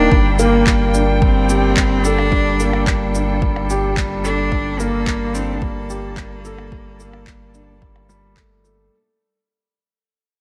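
A felt-muted upright piano sits up front with a soft, mellow riff, its hammer action audible and giving this short piano and strings electronica piece an intimate, moving character. Over it a close, bowed solo cello carries the melody with smooth vibrato and a touch of delay, while a distant string quartet holds sustained chords with portamento and a gentle sidechain pump. A round analog bass anchors the low end on G, deep and pumping in time, and an overdriven, layered electronic kick hits from 0.1 seconds. Tape-tinged electronic shaker, handclaps and percussion blips fill in the top from 0.4 seconds. At 109 BPM in straight 4/4 and G minor, the passage rests on a Gmadd9 chord as a drop that fades out across its length, framed by light small-room ambience and a dark production.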